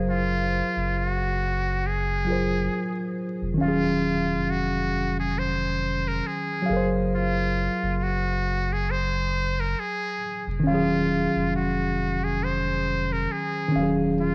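A muted trumpet with a metal mute carries the melody from 0.1 s, buzzy and thin yet brilliant, its close-miked jazz-style solo sitting up front with vibrato and scooped notes. This is a melancholic, hazy lo-fi hip hop piece in Eb dorian at 68 BPM in 4/4, with a loose swing on the 16ths and a tuning slightly below standard. A worn, slightly out-of-tune tine electric piano supplies the accompaniment, its clean, direct tone dulled by cassette tape and a low-pass filter, while a round, deep sine sub bass holds down the low end with sustained, mellow notes. The harmony alternates between Gbmaj9#11 and Ebm11 across this brief cut from a longer piece. A moderate spring reverb, warbling old tape with pitch drift, and vinyl crackle wrap the whole mix in a worn, hazy atmosphere.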